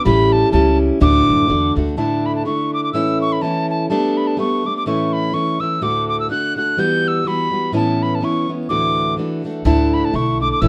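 A wooden whistle with a pure, straight tone and soft attack carries the melody up front from the opening, over a fingerpicked, plugged-in steel-string acoustic guitar that is just as present, in a lively, bright Celtic polka in D major at 125 BPM with a swung 2/4 lilt. A thumpy, woody pizzicato upright bass joins at 0.1 seconds, drops out at 2.0 seconds, and returns at 9.7 seconds, while chords built on D, A, G and E minor with added colour tones pass beneath the tune. Moderate studio reverb and a dark, warm production round out this short excerpt of a longer piece.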